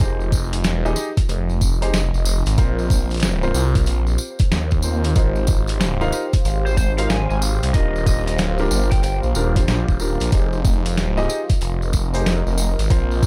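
The production is dark and enveloped in digital ambience, framing a gritty, playful glitch hop groove with swung sixteenths, cut from a longer piece. Up front, a knocking, layered electronic kick plays alongside a compressed, pitched-down sampler-style kit of hi-hat, rim click and medium-tuned snare; both drum parts are overdriven and set in studio reverb, while a jingly acoustic tambourine sits low in the mix. A thick, swirling detuned saw bass, saturated and phased, dominates the low end. Mellow, short-sustained grand piano stabs pump with sidechain and dub echo, and a warbling, nostalgic pad with chorus hovers in the background from 0.2 seconds. Between 6.7 and 9.2 seconds a lo-fi, picked electric guitar through a small cranked amp adds a brief line with dub echo, as the harmony moves from Fm7 through Bbsus2, Ab6 and Ebmaj7 before returning to Fm7.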